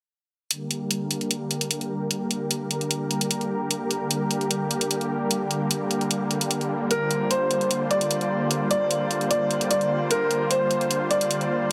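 Heavy and menacing, this short excerpt of half-time wobble dubstep at 150 BPM in G minor opens at 0.5 seconds on a lush, detuned supersaw pad holding a G minor chord under a low-pass filter sweep, alongside an overdriven, layered electronic hi-hat up front, before a clear, boxy baby grand piano enters at 6.9 seconds with a dub-echoed melody, all set in a moderate hall reverb with a heavily compressed, radio-like sound.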